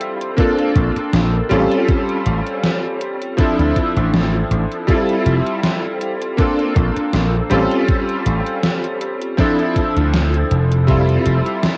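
A bright, clangy electric grand piano with chorus, cassette wobble and analog delay accompanies this dreamy, woozy vaporwave excerpt at 80 BPM with a light 16th-note swing, cycling through Bbmaj7, A7alt, Dm9 and Fmaj7 over a punchy slap bass entering at 0.8 seconds, a thumpy overdriven electronic kick, and a gated 80s drum machine's hi-hat and gated-reverb snare, all wrapped in the haze of a home cassette recording.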